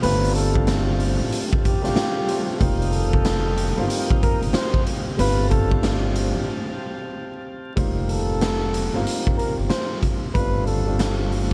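This boom-bap hip-hop excerpt sets a warm, soulful mood at 93 BPM in 4/4, with a swing on the sixteenths and chords moving between G9sus4 and F9sus4 in F mixolydian. A raw garage drum kit sits up front, its punchy kick, medium-tuned snare and hi-hat saturated and gritty in a bright, pumping stone room with a rolled-off top. Beneath it, a pizzicato upright bass on gut strings gives a woody, thumpy low end, while a dark baby grand piano adds mellow accompaniment with long sustain and a cassette-tape colour. A trumpet with a bucket mute carries the solo melody in a veiled, forceful jazz style with a smooth top and tape echo. In the background, a clean tonewheel organ holds sustained chords through a slow rotary speaker with audible key click until 7.7 seconds, as a break runs from 6.5 seconds up to the start of the second section at 7.8 seconds. Light reverb and a layer of vinyl crackle sit over the whole track.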